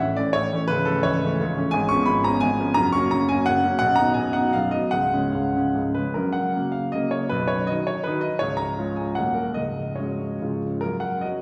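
A clear baby grand piano plays alone from the first moment, in a proud, graceful romantic triple-time dance in 3/4 with dotted rhythms, moving with rubato between 136 and 184 BPM in F# major. The natural, up-front piano tone has long sustain and spans from B0 to C#6, set in a wet recital hall reverb that places the listener further back in the room. Cut from a longer piece, the passage shifts into a new section at 6.2 seconds before settling on an F#5 chord at 10.8 seconds.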